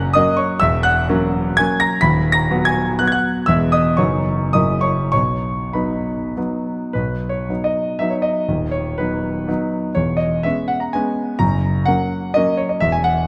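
Romantic classical music: a graceful, proud triple-time dance in B major for solo concert grand piano, moving in 3/4 with dotted rhythms and a flexible rubato that lets the tempo drift between 94 and 139 BPM. The piano sounds clear and slightly worn, with a deep bass and a natural, up-front presence, set in a moderate concert hall reverb. In this short passage cut from a longer piece, the opening phrase gives way at 7.0 seconds to a second section that settles on an F-sharp chord.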